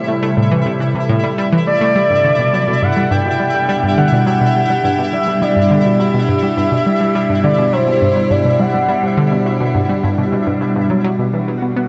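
An up-front, morphing wavetable pad with phaser and its own reverb holds sustained chords through this mysterious, hypnotic slice of ambient, sequencer-driven space music at 104 BPM, moving from Am7 to Gmaj7 and reaching Bm7 at 11.2 seconds. A smooth, expressive sawtooth lead with vibrato, lush chorus and delay carries the melody until 9.5 seconds, while a round analog pluck with a filter sweep plays a low riff and a quieter pulsing, detuned gated texture hovers above. The mix sits in a huge, wet reverb with a rolled-off top end.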